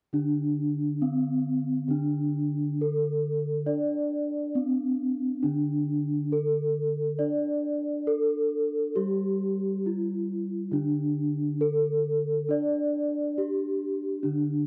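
Two bronze metallophones ring together from the first moment in this serene, shimmering gamelan fragment at 68 BPM in D slendro, the higher one carrying the melody with a dark, smooth tone and the beating shimmer of paired tuning while the lower one accompanies softly beneath, both struck with padded disc mallets and heard up front in a dry, close 1970s-style studio sound.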